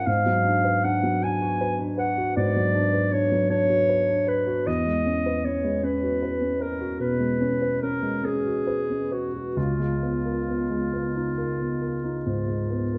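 A mellow, distant clarinet carries the melody up front in this pastoral, luminous fragment of impressionist classical music, drifting in a rubato 12/8 at roughly 43-53 BPM in dotted quarters over a dark, worn baby grand piano whose long-sustained accompaniment moves through Bm6/G#, E69 and C#13, all tuned to A4 = 441 Hz and set in a roomy recital hall with a 1.4-second reverb.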